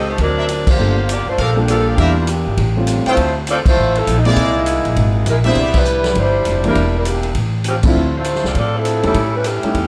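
Swinging and energetic, this big band swing passage rides on a mellow saxophone section carrying the melody with light vibrato, over a woody pizzicato upright bass and a drum kit with a punchy kick, medium-tuned snare, hi-hat, ride and crash. A brilliant trumpet section adds stabs until 5.8 s, while a warm concert grand piano with audible action noise supplies intimate accompaniment. The band hits accents at 0.6, 3.6, 5.7 and 7.8 s, and moderate reverb from a large studio room places the saxophones at a roomy distance.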